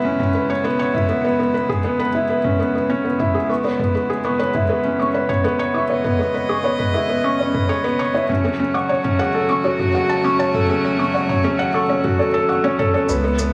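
Electronic toms and a shaker set a straight 4/4 pulse at 100 BPM from 0.2 s, with a filter sweep on the low-passed drums, under a felt-muted upright piano riff that sits up front with soft, mellow tape-echoed tone and audible action noise. A string quartet fades in with sustained, reedy gut-string chords in a period chamber style, and at 3.5 s a warbling, lo-fi pluck joins with detuned, dusty arpeggios bathed in lush chorus and tape echo, moving through C#m7, E6 and F#m. This intimate, melancholic piano-and-strings electronica excerpt sits in a small studio room with moderate echo-chamber reverb, and a round, deep analog bass arrives only at 13.1 s.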